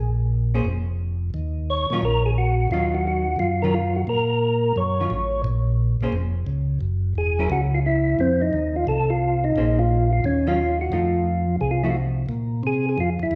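A wet, roomy live-band sound carries this smoky, late-night jazz excerpt in Bb minor at 175 BPM with a swung 4/4 feel, where a smooth tonewheel organ with key click and slow rotary speaker holds down the bass, a mellow, round percussive organ with third harmonic percussion sings the up-front melody from 1.7 seconds, and a dark, picked hollow-body electric guitar comps over chords moving from Ebm9 through Gb7 to F7.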